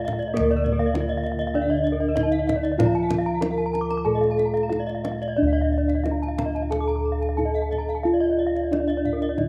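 Bronze metallophones and up-front, round-toned bossed gongs open this shimmering, brilliant fragment of Balinese gamelan together: a mellow melody struck with padded disc mallets, a dry, close-miked accompaniment that stops at 5.4 seconds, and high arpeggios from a wooden-mallet instrument shadowed by a fainter, airy horn-mallet partner, all while a tight, band-limited kendang plays along with hard hands in the small room ambience of a rough home demo.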